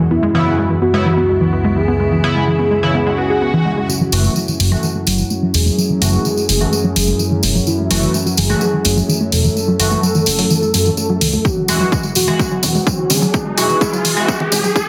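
Melodic techno at 127 BPM in F# minor, driving and hypnotic, where a morphing wavetable pad, a resonant analog drone on F#2, a warbling lo-fi pluck arpeggio, a thick dark unison lead with vibrato and an edgy sync-sweep polysynth with phaser all pump to the sidechain, with filter sweeps moving through the pluck, lead and polysynth. A swell at 3.1 seconds ushers in a jingly tambourine, fat detuned analog bass and overdriven electronic hi-hat and congas as the harmony moves from C#m7 to F#m7 and a long build-up begins, and an overdriven heavy kick arrives at 11.4 seconds with a drum fill and riser over Eadd9 in a dense, heavily limited mix with a wet digital room reverb.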